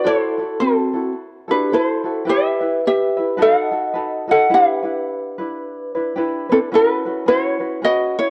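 A mellow, fingerpicked ukulele carries the melody up front in this sunny, dreamy Hawaiian excerpt in E minor at 108 BPM with a light swing, joined by a ringing, metallic vibraphone played with soft mallets and fast motor vibrato until 6.1 s and a thumb-plucked tenor ukulele accompaniment, the vibraphone and tenor ukulele carrying a cassette tape grain, all set in spring reverb and small-room ambience as the chords move from F#m7b5 through Em and B7 to a closing E69 at 6.7 s.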